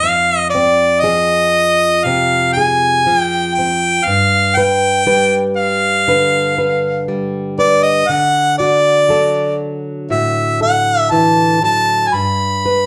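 A clear harmonica carries the melody in this intimate, reflective folk passage, cut from a longer piece, sitting up front and close-miked with a light vibrato, scooped notes and a plate reverb that gives its pop-style solo line a soft halo between D5 and B5. Beneath it, a nylon-string guitar in a classical manner provides thumb-plucked accompaniment from F2 to B4, its warm acoustic tone also placed up front, with the occasional finger squeak adding a human touch. Both parts play together from 0.0 to 12.9 seconds at an unhurried 60 BPM in a straight 4/4, tuned slightly under standard pitch at A4 = 439 Hz. The harmony moves from Fm to G, then to D, and returns to G near the close. A wet studio reverb with a short decay places the listener further back in the room, lending the performance a gentle, spacious quality.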